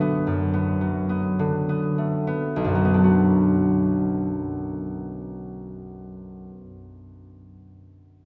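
A solo concert harp opens this gentle, mysterious classical fragment, its bright, ringing fingerpicked notes moving in free rubato time and slowing over the first 2.5 seconds before passing into a new section, bathed in a long cathedral reverb that places the listener further back in the room until the harp falls silent at 6.5 seconds.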